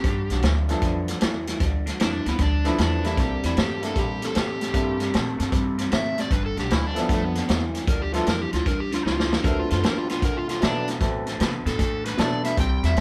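Soulful and swaggering, this electric blues shuffle swings at 153 BPM in G mixolydian, with a dark, overdriven slide guitar taking a fingered solo across the whole 13-second excerpt over a slightly broken-up, lo-fi guitar riff colored by phaser. A growly, woody pizzicato upright bass and a punchy, up-front vintage drum kit with a rolled-off top drive the groove, with a drum fill at 9.1 seconds, while a clear, intimate upright piano with audible action noise comps from 0.7 to 12.6 seconds. The changes move from G13 to C13, back to G13 and on to D13, all captured as a band playing live in one room with light reverb.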